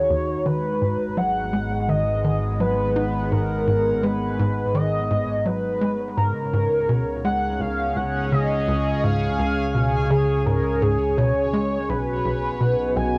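A cassette-taped home recording with a damp, close booth ambience frames this cosmic, mysterious stretch of ambient, sequencer-driven space music at 84 BPM, cut from a longer piece and moving through Abm7, Db and B. A tight, punchy sequencer bass drives a nasal, plucky riff with vintage 12-bit grit and analog delay, while an analog drone holds the low end with tube saturation and a sweeping resonant pad sustains bright, slowly swelling chords under plate reverb. Up front, a shimmering, detuned pulse-width lead sings a retro melody with vibrato, ring modulation and analog delay, and from 0.5 s a very quiet, bubbling stepped-filter texture adds resonant flickers.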